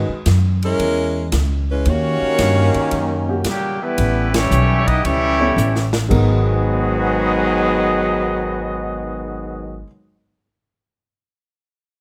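Close, detailed microphones and a light reverb give this short swing cut from a longer big band piece an up-front, present sound. Set in G# minor at 113 BPM with a firm swing feel, the mood is dramatic and swinging. A tight saxophone section with light vibrato carries the opening melody over a woody, thumpy pizzicato upright bass, while a bright trombone section soon adds a second line. At 3.5 seconds a clear, vintage-toned trumpet section with a soft attack takes over the melody, and a baby grand piano with short sustain and audible action noise sits quietly in the background as accompaniment. The airy, polished drum kit, with its punchy kick and ride and crash cymbals, plays through a band accent at 4.2 seconds and adds a fill before stopping at 6.3 seconds. The harmony moves from G#m7 through C#m, D#7#9 and A7 before returning to G#m7.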